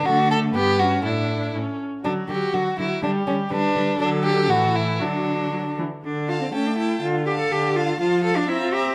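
Spirited and lively, this quick classical-period string quartet passage is cut from a longer movement, moving in two with a flexible, rubato feel. The melody sits in the first violin, a warm, expressive voice with vibrato and portamento that sounds set back in the hall. Beneath it, the second violin carries a rich, focused second line placed up front, while the viola's full-bodied, bowed accompaniment and the cello's clear bass round out the texture, all with vibrato. The harmony moves through bright major-leaning chords, including a colourful Gmaj7#11, before darkening into minor at 6.0 s and closing on F. Close, detailed microphones capture each single player within a moderate recital hall reverb.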